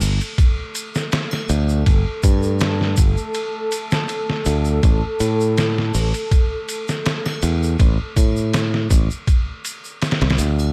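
A dark, cinematic trip hop passage cut from a longer piece opens with bass, drums and light percussion together, moving at 81 BPM in 4/4 with a slight swing on the sixteenths. The sampler-style drum kit sits up front, pitched down and compressed, with a thumpy kick, a medium-tuned snare, hi-hat and ride cymbal carrying a gritty, tape-warm character in a small room ambience. Just after, at 0.3 seconds, a deep, moody pad fades in with a slow attack, its detuned sawtooth unison layered with a sine sub octave, colored by chorus, a moving notch and its own reverb, and holding sustained chords with a long release. The fingered electric bass is bright, direct and growly, also placed up front in the low register. Soft tube shaker and triangle add a quiet, band-limited, vintage acoustic texture beneath the kit. The harmony rests on a Gsus2 before dropping away from chords at 4.8 seconds, all set in a digital ambience.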